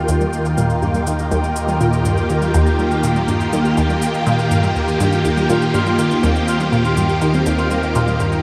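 Swirling, vintage string-machine chords, placed up front and colored by ensemble chorus and phaser, open this hypnotic, expansive stretch of sequencer-driven space music, cut from a longer piece in a straight 4/4. Beneath them a juicy, squelchy blip pluck repeats a riff in the low register, its detuned square and sawtooth tones given a fast attack and short decay and sent through phaser, lush chorus and delay. Deeper still, an evolving analog drone holds a single low note with slow attack and long release in the background, while a bubbling, stepped-filter texture sustains one high note behind it, treated with chorus and its own reverb. From 0.1 seconds, electronic shaker and congas, re-recorded in a large room, add a delayed pulse. At 5.5 seconds a mellow, ringing Celtic harp enters with fingerpicked arpeggios in the middle register, trailed by delay, as a wet shimmer reverb with a long tail bathes the whole arrangement.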